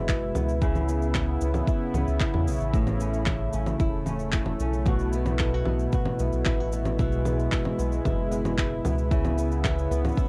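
Folktronica in a delicate, autumnal mood, this short excerpt sets a dark, fingerpicked flamenco guitar's arpeggios, with audible finger squeak, low-pass filtering and tape echo, over sustained chords from a smooth, detuned analog pad with chorus and tremolo, a round, deep analog bass, and tape-warm electronic kick, handclaps, shaker and congas, all in a light-reverb home cassette recording moving from C#m7 through A and B7sus4.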